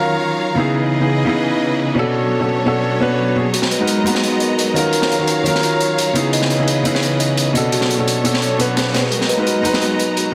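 A dense, heavily limited mix set in a moderate, lush hall reverb carries this melancholic, soulful liquid drum and bass excerpt at 172 BPM in G# minor, where an intimate, up-front grand piano with audible action noise and tape echo accompanies a clear, bowed string section sustaining minor-ninth chords over a barely audible, overdriven electronic hi-hat, until at 3.5 s a gritty, saturated breakbeat kit with a high-tuned snare arrives alongside a woody kalimba ringing out arpeggios through tape echo in the background.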